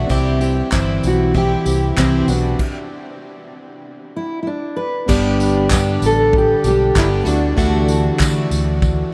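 A shimmering, octave-doubled twelve-string acoustic guitar opens up front alongside a full-bodied fingerpicked steel-string melody, a reedy, slightly out-of-tune electric piano with fast tremolo sitting very quiet beneath, and a round, foam-muted vintage bass, before an airy country drum kit with punchy kick, handclaps and crash joins at 0.1 s with a jingly tambourine in the background, the easy-going, heartfelt, swung acoustic pop passing through a stop from 2.6 to 5.1 s as the chords move from C and Bm to G and Dadd9, set in the huge reverb of a vast, echoing space.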